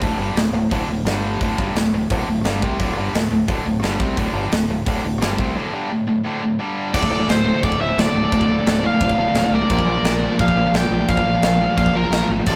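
A rough rehearsal-room recording with tube saturation and light reverb carries this dark, epic heavy metal excerpt in D minor at 173 BPM, where a tight, up-front distorted guitar, a very quiet high-gain rhythm guitar, an overdriven growling fingered bass and a big, airy rock kit with punchy kick and bright china and crash cymbals drive riffs over D5 and G5 power chords. At 6.9 seconds the harmony moves to Dm and then Bb as a bright high-gain lead guitar takes the melody up front, joined by a very quiet, double-tracked fuzz guitar riff and, from 7.0 seconds, a dark second lead line set in the background.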